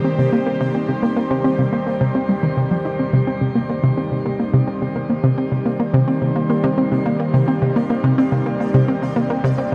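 A round, bright analog pluck carries the riff up front in this cosmic, expansive piece of sequencer-driven space music, set in C minor at 107 BPM in a straight 4/4, with chorus and analog delay on the pluck. A swirling, phased analog pad holds sustained chords on C minor, while a faint pulsing gated texture glimmers on a single high note in the background through chorus and its own reverb. A filter sweep runs over the synth arpeggio across the full 9.7 seconds of this excerpt, and a wet shimmer reverb gives the dark, warm production its vast sense of space.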